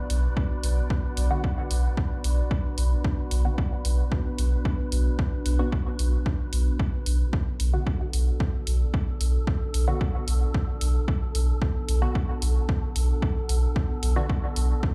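A moody, detuned sawtooth pad and an airy, wind-like noise texture open this deep, meditative dub techno excerpt in B minor at 112 BPM, soon joined by a round sub bass, a dry, punchy overdriven kick, an analog, overdriven hi-hat and, from 1.3 s, a muted, filtered chord stab trailing dub echo, chorus and phaser, with the pad, texture, bass and stab all pumping under sidechain compression over a single Bm chord in the large, reverberant space of a big sound system in a bare room.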